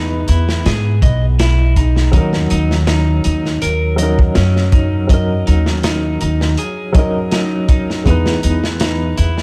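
This short trip hop excerpt moves at 81 BPM in Eb phrygian with a lightly swung 16th-note feel, its dark, hypnotic mood built on chords moving from E to Ebm7 and back to E at 8.1 seconds. A woody, pizzicato upright bass sits up front with a saturated, gritty breakbeat kit of tight kick, medium-tuned snare and hi-hat that enters at 0.3 seconds, while a mellow upright piano with tremolo and tape echo plays accompaniment. A picked electric guitar at the edge of break-up spins compressed arpeggios coloured by 12-bit sampler grit and tape echo, all within a dry, dark production.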